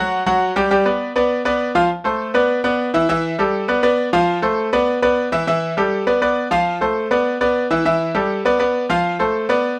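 A lone concert grand piano opens this festive, sunny Latin cut from a longer piece, its brilliant, worn tone sitting up front with audible action noise and deep bass in a moderate studio reverb and rough home-demo mix, moving from a G chord to D5 at 1.9 seconds and then into a repeating cycle of Bmadd11, A5, Bdim and Dm7.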